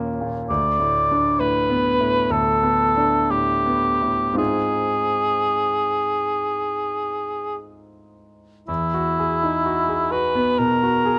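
A clear, smooth concert grand piano opens this pastoral, dreamy impressionist classical duo, its deep bass and vintage character sitting up front, and at 0.5 s the warm cor anglais enters on a D5 to carry the solo melody with light vibrato. Moving in a rubato 4/4 at around 54-67 BPM in Ab lydian, the music reaches a high Ab6 at 4.4 s before shifting to a new section on an Emaj9 chord at 8.7 s. The close, detailed recording holds little reverb, keeping both instruments intimate in this passage cut from a longer piece.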